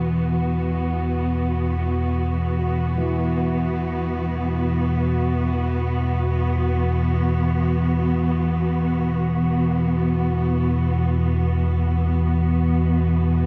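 Dark and cavernous, this ambient excerpt in E minor drifts in free time as a nasal, evolving analog drone with chorus and muted, veiled cello-section chords sit up front, a very quiet bronze singing bowl rings with slow beating beneath, and from 3.0 seconds a mellow, vintage baby grand piano adds tape-echoed arpeggios in the background, all bathed in a 6.2-second cathedral reverb.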